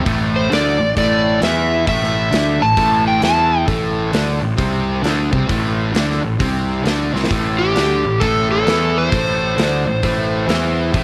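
Light reverb gives this heavy, brooding slice of blues rock and southern rock a close, studio-room feel, with the guitars and bass pushed up front. At 132 BPM in 4/4 with a loose swing on the eighths, the piece sits on A minor throughout. A double-tracked, compressed fuzz guitar drives the riff with a bright, picked edge, while a growly fuzz bass, fingered and overdriven, holds down the low end. An acoustic rock kit with a punchy kick, medium-tuned snare and hi-hat anchors the groove and drops a fill at 7.1 seconds. On top, an overdriven slide guitar with a warm, slapback-echoed tone carries the melody, entering at 0.4 seconds, falling away, then returning at 7.6 seconds as this cut-down section runs on.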